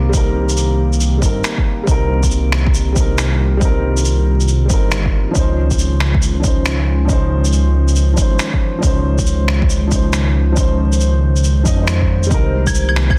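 Future garage at 138 BPM in C phrygian, this short excerpt from a longer piece feels wistful and ghostly, its 16ths carrying a 64% swing over chords moving from Cm7 to Dbmaj9 and back to Cm7 at 12.3 seconds. A dark, detuned saw bass sits up front with a deep, rumbling, beating tone, pumping against the sidechain beneath an overdriven electronic kick that is deep, layered and re-recorded in a large room. Muffled, tape-softened shaker, finger snaps and claves fill out the drums with a sampler-style, compressed character, the snare touched by soft clipping. A dark upright piano plays woody, intimate accompaniment with audible action noise and short sustain, its notes pumping and echoed by delay. Behind it all hangs a warbly, nostalgic lo-fi pad of slow-attack chords with chorus and its own reverb, while the dense, heavily limited master carries a layer of vinyl crackle and light reverb.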